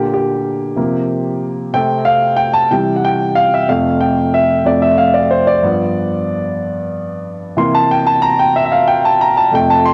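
This home cassette recording has a wet studio reverb and a short decay, with the tape character and tape echo colouring the solo concert grand piano from start to finish. The piece is gospel in 6/8 at 62 BPM counted in dotted quarters, with a straight feel and an uplifting, hopeful mood. The piano sits up front with a natural, warm tone and deep bass, spanning F2 to C6 as it plays alone for the whole 9.9 seconds. Its harmony moves from Gm/Bb through C7sus4 and Fadd9/C to C, settles on F at 3.7 seconds, then passes through G7 to C7 at 7.6 seconds. The passage is cut from a longer piece and stays within a single section.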